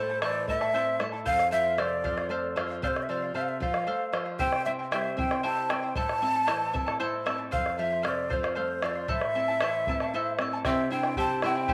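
A steady 6/8 pulse carries this festive yet wistful Andean folk passage, cut from a longer piece, with a round, vintage-sounding bombo entering at 0.2 seconds beneath fingerpicked accompaniment from a bright, shimmering charango with double strings and a classical nylon-string guitar, its finger squeaks audible. Up front, a breathy wooden quena carries the melody with vibrato, a crisp chiff on each attack and an expressive, close-miked presence. At 10.7 seconds a mellow, hollow bamboo pan flute adds an airy straight-tone second line, all set in wet spring reverb and studio ambience.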